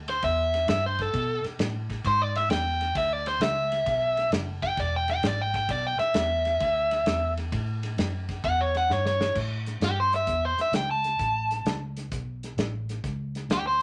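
A round, punchy, foam-muted fingered bass opens this rollicking, laid-back electric blues shuffle at 131 BPM in A mixolydian, joined at once by a bright, overdriven and compressed picked electric guitar that takes an up-front solo until 9.4 seconds. A soul drum kit with dark cymbals, a medium-tuned snare and a tight kick swings the 4/4 groove, playing a fill from 8.9 seconds into a new section where the harmony moves to A7. The parts sit in a moderate club reverb, and the clip is cut from a longer piece.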